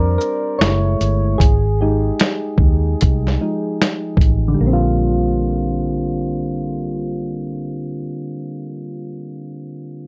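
Dreamy and nostalgic, this short lo-fi hip hop fragment, cut from a longer piece, sits at a relaxed 75 BPM in 4/4 with a 64% swing on the sixteenths, centered in Bb mixolydian. Soft, mellow electric-piano-like synth keys carry the harmony from 0.0 to 10.1 seconds, treated with chorus, cassette tape character and a low-pass filter, and they take a solo with a filter sweep through the opening 4.6 seconds. Underneath, a vintage muted fingered electric bass with a dark, foam-muted, round tone sits up front from 0.0 to 8.1 seconds, while a compressed, muffled sampler-style drum kit with a thumpy kick, medium-tuned snare, hi-hat and shaker plays from 0.2 to 4.4 seconds. The chords move from Bb69 through Gbm9 to Fm9/Ab before returning to Bb69 as a second section begins at 4.6 seconds. A light reverb lends the close, tape-flavored mix a gentle sense of space.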